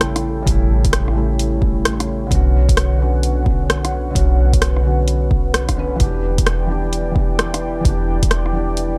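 Future garage at 130 BPM in E dorian with a swung 16th-note feel, this nocturnal, ghostly cut from a longer piece sets a felt-muted upright piano, soft and intimate with audible action noise and digital delay, over a moody, detuned sawtooth analog pad with chorus and a slow attack and a round, sine-toned 808-style bass with tube saturation, each of these three pumping under sidechain, while an up-front deep house kit of hi-hat and rim click and a punchy, layered electronic kick entering at 0.5 s share studio reverb as the harmony moves from A7 to Bmadd9 to Em7 in a dark, lightly reverberant production.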